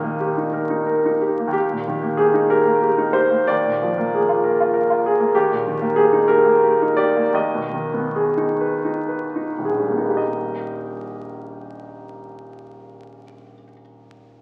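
A clear grand piano carries this romantic character piece alone, its tone intimate and natural, placed up front with the mechanical noise of its action plainly audible. The music sits in Eb major in a lilting 6/8, moving with free rubato at a slow pace of roughly 33 to 68 dotted-quarter beats per minute, and its mood is passionate and warm. The piano spans a deep range from Eb1 up to Eb6, and the harmony rests on an Eb pedal, passing through Bb7 and a darker Ab minor colouring before settling back on Eb at 10.2 seconds. The tempo slows between 4.4 and 10.2 seconds, easing the phrase toward its return home. The sound carries the crackle and patina of a very old 78 rpm record, with the instrument heard in a wet recital hall whose reverb hangs for about 1.5 seconds. This short passage is cut from a longer piece.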